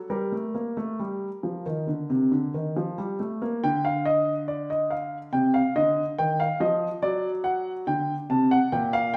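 Classical baroque-style two-part invention for solo concert grand piano, contemplative and serious in mood, this brief fragment of a longer piece offers an intimate, natural piano tone with deep bass, long sustain and audible action noise, heard from further back in a stone room whose reverb adds a lingering, wet halo, with the harmony shifting at 3.6, 5.3 and 7.0 seconds.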